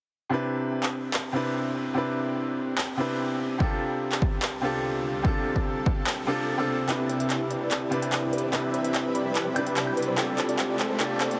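A heavily compressed, radio-like sound with moderate shimmer reverb frames this playful, lush future bass excerpt in C major, moving at 146 BPM in a half-time feel. A brilliant, up-front baby grand piano opens the piece with pumping dub-echoed chords, joined by a crisp big-room kit of handclaps, hi-hat and woodblock, a punchy layered kick from 3.6 to 5.9 seconds, and an ethereal, shimmering pad that drifts in at 4.6 seconds. At 6.9 seconds the build-up begins with a drum fill as a fat, detuned sawtooth polysynth riff under a filter sweep arrives alongside a soft, round, very quiet pluck arpeggio, while a background riser climbs in from 8.5 seconds. Underneath, the harmony moves from Cmaj7 through F69/C and Bbmaj9/C, then returns to Cmaj7 and F69/C.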